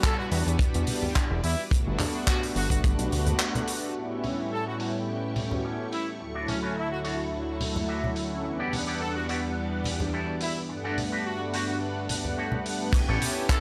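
A lightly swung 107 BPM groove drives this sunny, feel-good nu-disco excerpt in A mixolydian, where a tight, up-front acoustic kick and a small-room funk kit of muffled hi-hat, crash and handclaps join bright soft-handed congas, while a fat, nasal, saturated analog bass plucks beneath a smooth, pumping analog pad and a lush vintage string machine with gritty ensemble chorus, and a brilliant close-miked trumpet section with light vibrato and dub echo carries the melody over Em7, Gmaj7, A7 and Dmaj7 chords until the kick and bass fall away around a band accent at 3.4 seconds so a twangy, clean envelope-filtered guitar riff can slip in at 4.0 seconds, with kick and bass returning at 12.9 seconds.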